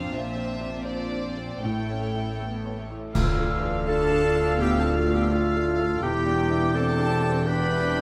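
A mellow solo clarinet sings out most clearly in this bittersweet, sorrowful fragment of a cinematic film score, entering at 3.9 seconds to join the oboe and flute section as a second line. Before it, bowed violin sections carry the melody and a floating upper line over a clear concert grand piano with a deep, open bass, while viola, cello and shadowy double bass sections sit beneath with soft attacks and a sul tasto purity. Dark cymbals, clash cymbals and concert bass drum sweep in from the start, and at 3.1 seconds the ensemble lands on an accent, with very quiet timpani struck by hard mallets. There the harmony turns minor, and a distant French horn section adds sombre sustained chords as the clear oboe and expressive flutes rise above. The rubato flow and moderate scoring stage reverb give the orchestra a spacious, aching glow.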